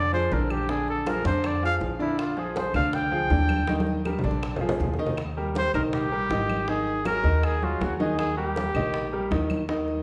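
Set in the lush ambience of a concert hall, this danceable, sophisticated slice of Afro-Cuban jazz puts a mellow trumpet up front, its solo from the opening to 5.2 seconds colored by light vibrato and scooped notes. A clear concert grand piano with a deep bass register shares the foreground, while a pizzicato upright bass with a woody tone anchors the low end. Ringing congas, tight high-tuned bongos and woody claves sit in the background, with a drum fill arriving at 3.7 seconds.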